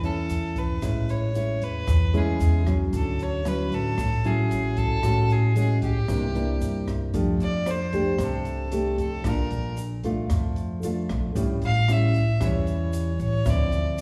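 A wet recital-hall reverb hangs around this short cut from a longer bossa nova, giving it the spacious air of a church or concert hall. The feel is sophisticated and breezy, in a straight 4/4 at 114 BPM, with the harmony moving through jazzy sevenths, ninths and sixths in A major before shifting to F major at 7.1 s. Up front, a classical nylon-string guitar is thumb-plucked with audible finger squeak. A woody, thumpy upright bass plays pizzicato on gut strings beneath it, and a dark, smooth jazz kit adds hi-hat, rim click and a boomy kick with a rolled-off top, while a grainy, bright egg shaker sits in the background. A close, reedy fiddle carries the melody with a bowed gut-string tone and takes a solo from 7.1 s. A worn baby grand piano with long sustain drifts in behind it at 7.7 s.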